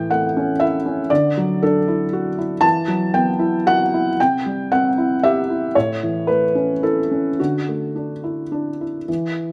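Captured live in a single room with light reverb, this brief, wistful and melancholic fragment of neoclassical minimalist piano features a lone felt-muted upright piano, intimate and boxy with audible action noise, set up front and playing in a rubato 3/4 at around 105-121 BPM, tuned to A4 = 441 Hz, spanning A2 to A5 over chords moving from A through Dadd9, Emadd9 and C before returning to A and Dadd9 across its 9.5 seconds.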